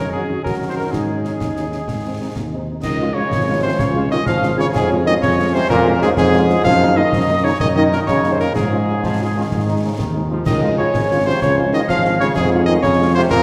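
Spirited and festive, this is a military-style march for wind band in a straight 6/8 at 126 dotted-quarter beats per minute, set in Db major and cut from a longer piece. A warm, punchy solo cornet with light vibrato carries the melody, while a dark woodwind section with soft attack sits distant in the background, sharing the same register as a second line. A roomy euphonium adds its own second line beneath, and a dark tuba with a smooth top anchors the bass. A very quiet, bright trombone section holds tight sustained chords, and a mellow, close-miked French horn section supplies soft accompaniment, with concert snare drum, bass drum and clash cymbals joining at 0.5 seconds, the cymbals ringing bright. After a short opening phrase that passes through a suspended chord, the music settles onto Db at 2.8 seconds, and the band is heard from further back in a scoring stage with a generous reverb tail.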